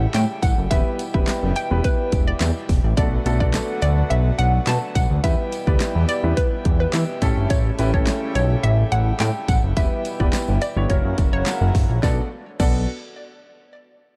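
Dance-pop in B minor at 106 BPM, this driving, confident passage is cut from a longer piece and sits in a drop, with a punchy pop drum kit of kick, fat snare, hi-hat, handclaps and crash up front beside a thick, saturated analog bass whose detuned sawtooth and square tones pump with sidechain compression. A hollow, bouncy square-wave pluck carries the melody through chorus and digital delay, while a clear grand piano entering at 0.7 seconds and a reedy pedal harmonium hold the harmony, both pumping, and a jingly tambourine sits close and dry in the background. Chords move through A7, Em, Bm7 and F#7 in a small room with a dark production and some lossy compression artefacts.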